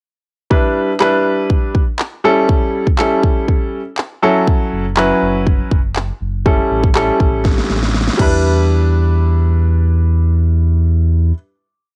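Dance-pop in E dorian at 121 BPM, this short, complete piece feels driving and bittersweet, with a clear, polished baby grand piano pushing drop2-voiced chords from Em7 through A7 and F#m7, pumped by sidechain and tinted with cassette tape. A punchy, layered electronic pop kit of kick, fat snare, handclaps and crash drives a syncopated beat up front until a drum fill at 7.5 seconds leads into the final hit at 8.4 seconds. A deep, sine-like sub bass with an octave enters at 4.7 seconds, playing sustained off-beat notes with a fast attack and sidechain pumping, all set in light reverb on a home cassette recording.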